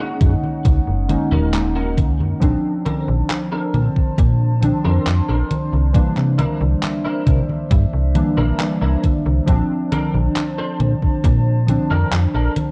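A snappy, slap-like FM bass with a metallic attack sits up front in this short, woozy vaporwave fragment, entering at 0.2 seconds alongside a thumpy electronic kick and a detuned 8-bit drum machine of congas, handclaps and hi-hat, the two drum parts treated with studio reverb. Warbling lo-fi synth keys, built from square and sawtooth tones with a filter sweep, analog chorus and analog delay, carry the mellow accompaniment. Behind them, a detuned tape-like pad holds slow-blooming sustained chords with chorus and its own reverb. A bright, twangy clean electric guitar plays a picked riff, its compressed, scooped tone roughened by 12-bit sampler grit and thickened with ensemble chorus and analog delay. The harmony drifts from Gb6 through Bbmaj9 and C9 before settling back on Bbmaj9, all wrapped in a dark, cassette-tinged production that feels nostalgic and hazy.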